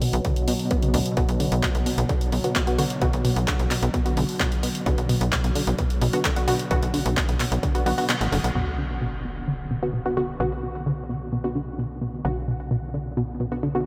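Soaked in cathedral-sized reverb, this dreamy, driving slice of peak-time techno sets a distorted, room-recorded electronic kick and a dry, overdriven analog drum machine with crash, handclaps and filtered hi-hats under a tight, nasal sequencer bass and a detuned, mellow sequenced synth riff that pumps with the sidechain. Muted, deep dub chord stabs with chorus and delay join at 1.2 seconds, while an evolving analog drone hums in the background. The kick drops out briefly before an electronic sub drop lands at 8.6 seconds, where the drums and drone stop and the bass, riff and stabs carry the intense groove onward.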